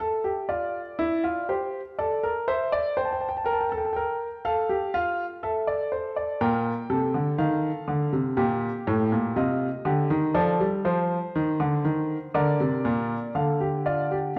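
Moving in a straight 4/4 at 61 BPM, this short passage cut from a longer piece unfolds with a stately yet lively pulse. It is a baroque-style three-part fugue in Bb major for solo grand piano, played across the full span of the recording from 0.0 to 14.4 s and ranging from A2 to A5. The piano sits up front with a clear, present and polished tone. A moderate recital hall reverb surrounds it, and the overall production leans dark and warm. The harmony travels from G7 through C7 and F to Bb, then moves through Cm7 and F7 before settling back on Bb at 12.3 s.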